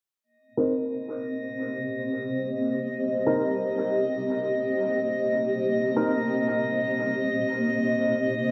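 Drenched in a wet plate reverb, this hazy, spacious ambient piece opens with a dark, woody upright piano playing stabs through lush chorus, dub echo and a low-pass filter from 0.6 seconds, joined at 1.0 seconds by a cloudy, detuned granular pad holding sustained Cm7 chords with up-front presence, and at 1.1 seconds by a glassy, bright sine texture of drifting overtones, while filter sweeps shape both the pad and the piano.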